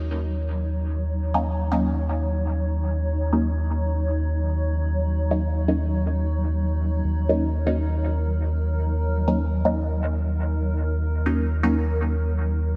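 A blurred, granular cloud pad and a round analog bass sound together from the very start of this hazy dub techno passage, cut from a longer piece in a straight four-four pulse. The pad holds slow-blooming, wave-folded chords that drift and evolve beneath a veil of its own built-in reverb, while the bass sits up front with a dark, sustained low tone. At 1.3 seconds a filtered dub chord stab arrives, muted and nasal with a resonant pluck and short decay, and it carries on until 11.8 seconds. A filter sweeps across the stab throughout, and phaser, dub echo and gritty vintage sampler texture give it a detuned, mellow character. A light digital ambience surrounds the whole mix, keeping the mood deep and hazy.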